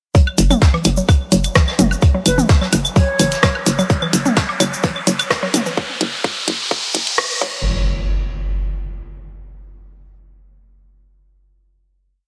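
Minimal techno at 128 BPM with a clinical, quirky mood: a tight, up-front four-on-the-floor kick and a hollow, bouncy FM bass on the off-beats drive a build with filter sweeps and a riser, while a woody, round mallet-like synth pluck loops a 7-step sequence drifting against the bar through chorus and delay, programmed garage hats with a rim backbeat, a grainy shaker in sixteenths, electronic claves, woodblock and toms clicking in cross rhythm, and a background looped brush breakbeat fill out the groove, an airy wooden flute slips in short phrases at 2.3 seconds, and a riser and impact carry the piece to a final hit at 7.6 seconds in a small, lightly reverberant room.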